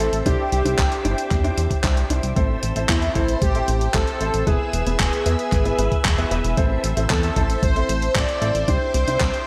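Opening with a bold, detuned analog synth brass melody with chorus and delay, lush vintage string-machine chords with phaser and ensemble chorus, short stabs from a concert grand piano with deep bass, and a glossy, nasal chorused synth bass, this danceable, nostalgic italo disco excerpt in A minor at 114 BPM adds a thumpy, tape-warm electronic kick at 0.3 s alongside gritty, overdriven sampler-style handclaps and hi-hat with gated reverb, moving through Cadd9, Am and E in a light digital ambience.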